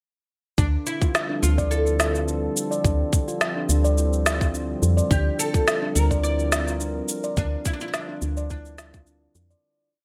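A lightly swung 4/4 groove of tight, soft electronic kick and a woody, layered electronic cabasa and snare soaked in gated reverb drives this meditative organic downtempo piece, while a round, dark FM bass holds long gliding notes with sidechain pumping. Above it, a steel tongue drum played with rubber mallets rings out a repeating 16-step arpeggio through a low-pass filter sweep, a detuned, warbling analog pad sustains slowly shifting chords with chorus and pumping, and a bright, plectrum-plucked fretless oud traces call-phrase motifs through digital delay. The production has a bright 1980s-style digital gloss with light reverb, and the piece fades out from 6.6 seconds to its close at 9.6 seconds.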